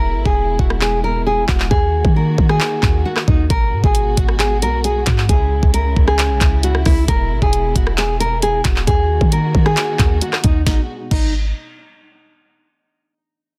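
A half-time trap groove at 134 BPM opens this menacing, hard-hitting hip hop cut from a longer piece, with the up-front, tape-tinged trap kit's knocking kick, sharp snare, bright hats, rim clicks, handclaps and crash entering at 0.3 seconds beneath a boomy, sine-like 808 bass with a fast attack and mellow decay. An up-front, fingerpicked classical nylon-string guitar carries the brooding melody over woody, softly bowed studio strings with light vibrato, moving through E, D#m, G#m7 and C#m before the harmony drops out at 10.7 seconds. Digital ambience surrounds the parts, and the master is dense and heavily limited.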